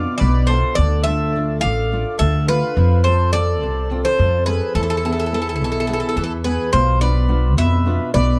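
Close, detailed microphones and a light reverb give this short Greek folk fragment an intimate, clear sound, bittersweet yet cool in mood. A Greek bouzouki band moves briskly at 212 BPM in a straight 7/8, with all four parts playing together from 0.0 to 8.4 seconds. The picked bouzouki carries the melody up front, its bright, metallic double strings, some doubled at the octave, touched by an analog delay. Beneath it, a mellow accordion adds a reedy, airy second line with a full tone-chamber character, while a fingerpicked flamenco guitar supplies accompaniment with a warm body and audible finger squeak. The pizzicato upright bass sits prominently in front, woody and growly on steel strings. The harmony passes from B diminished through D minor, F and E, returning to B diminished at 6.7 seconds as the opening phrase begins again before the cut.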